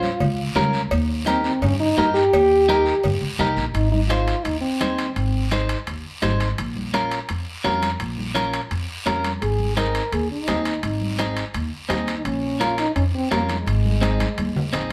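A joyful, danceable cumbia moves at 169 BPM in a straight 4/4, centered on Ab major and cut from a longer piece. A warm French horn carries a solo second line up front, close-miked and played in a classical style with vibrato, sounding from the start to 5.5 seconds and returning at 9.4 seconds. Beneath it, a bright, clean electric guitar is picked and compressed, holding the accompaniment throughout, while a woody, growly upright bass with steel strings sits up front with a thumpy pizzicato. The percussion brings a raspy, close guiro, ringing medium-tuned congas set back in the mix, and ringing metal-shell cowbell and timbales entering at 0.2 seconds, the congas and the cowbell and timbales close and dry. The harmony moves between Bbm, Eb and Ab, a drum fill arrives at 14.2 seconds, and the band plays live in one room under a wet studio reverb.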